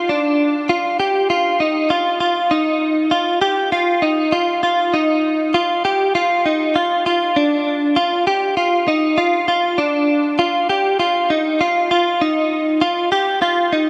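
Dreamy and ethereal, this short cut from a longer dream pop piece sits in a straight 4/4 at 99 BPM. A single clean electric guitar, recorded direct, carries the whole passage alone from 0.0 to 13.9 s. Its picked notes stay within a narrow, mid-register range, and the tone is warm, compressed and placed up front. Analog chorus and tape echo color the guitar, while a huge ambient reverb with a long 5.8-second tail surrounds it in a soaking, wet space. A brief opening phrase gives way to a new section at 2.5 s, which carries on to the end of the cut.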